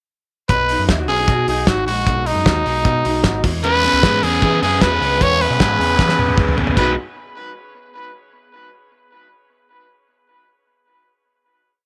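A raspy, growling trumpet leads this short, complete piece of jangly indie pop, playing a punchy, motif-based pop melody with light vibrato up front from 0.5 seconds. The mood is nostalgic and youthful, moving at a brisk 153 BPM in a straight 4/4 in B major, with the harmony going from B6 to E6 and back to B6. Underneath, a cloth-damped drum kit with a fat snare, tight kick and dark cymbals drives a dance-floor indie beat with off-beat open hats, while a deep dub bass picks a round, melodic line with slides. A lo-fi electric guitar through a small old amp rolls fingerpicked arpeggios with an ensemble chorus, and at 3.6 seconds a crunchy overdriven guitar joins, strumming open chord shapes in eighths through a phaser. A drum fill closes the verse before the final chord rings from 6.8 seconds, set in a light studio reverb.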